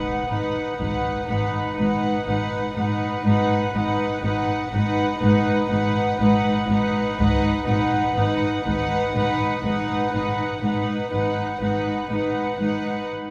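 Cinematic suspense film score, eerie and mysterious, moving slowly at 61 BPM in 4/4 in G# minor and resting on a single G#m7 chord throughout this short cut from a longer piece. Bowed sul tasto strings with soft attacks fill the church-like hall reverb: a floating, pure studio violin section carries the melody over a darker violin second line, an intimate viola section with vibrato accompanies, a warm cello section plays a riff, and a dark cello section and double bass section hold the bass in the background. A huge, bright impact opens the piece, heavy-stick taiko drums strike in the background at 0.8 and again from 7.2 to 9.1 seconds, and a break arrives at 13.1 seconds.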